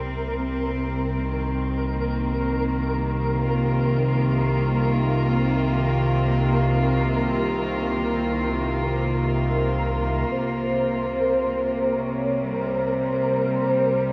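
Dark ambient drone in free time and C minor, this cut from a longer piece feels dark and cavernous, bathed in a wet cathedral reverb with a cassette-tape character. An evolving analog drone built from sawtooth, pulse and sine waves with wave-folding and pulse-width modulation sits up front in the low register, thickened by chorus and shaped by slow attacks and long releases. Beside it, a chamber cello section holds sustained bowed chords with light vibrato, its tone earthy with a smooth top. A flickering, grainy granular texture hovers on a single high Bb, detuned and mellow, carrying its own reverb. At 9.2 seconds a round, horn-like synth lead enters with a melody through chorus and diffuse ambient delay, gliding with portamento and vibrato under a filter sweep. From 10.3 seconds a synth drone fades in as the harmony returns to C.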